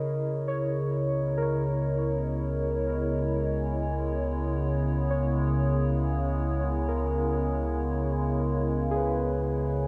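A lush, wet hall reverb with a long tail surrounds this spacious, melancholic ambient passage, cut from a longer piece and floating in free time in C# dorian, tuned slightly flat to A4 = 439 Hz. Up front, a warbly, tape-like pad holds sustained chords over a single C#m7 harmony; its detuned, wave-folded tone has a nostalgic, lo-fi, vintage character, with a slow attack, chorus and its own reverb. Above it, muted, felt-like synth keys play soft, intimate arpeggios in a narrow upper register, their quick, decaying notes darkened by a filter sweep and trailed by chorus and a diffuse ambient delay. Underneath, a deep, round sub bass sustains a low C#2 throughout. At 1.1 seconds, a quieter, resonant drone enters with moving overtones, colored by chorus, a phaser and its own reverb, and lingers with a long release to the close at 9.9 seconds.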